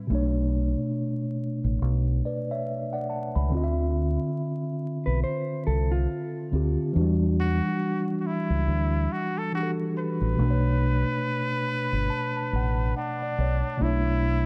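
Reflective and melancholic, this lo-fi hip hop excerpt drifts at 70 BPM in B minor with a swung 16th feel, as a mellow, clean tine electric piano through cassette tape and a low-pass filter carries the Bm9, Dm9 and Em9 chords over a round, up-front dub bass, a dark, fingered guitar line briefly appears with analog delay at 5.1 seconds, and a nasal straight-muted trumpet takes the jazz-style solo with vibrato from 7.4 seconds, all set in light digital ambience with a dark production and vinyl crackle.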